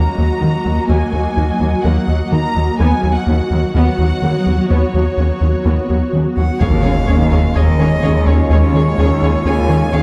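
A round, deep analog bass riff anchors this vast, futuristic hybrid orchestral and electronic film score cue at 126 BPM, moving from Ebm to Bsus2/Eb beneath a cloudy, evolving granular pad with built-in reverb, a soft-attack viola section and a lush cello section holding Eb2 in the background, while a smooth, distant studio violin section carries the melody until 6.1 s. A focused solo violin takes up the melody at 6.4 s, and at 6.6 s the harmony shifts to Db/Eb as an electronic impact lands, an intense symphonic violin section adds a second line, a vintage-toned trombone section sustains chords, and a very quiet double bass section holds Eb2. The dark production sits in a moderate scoring-stage reverb.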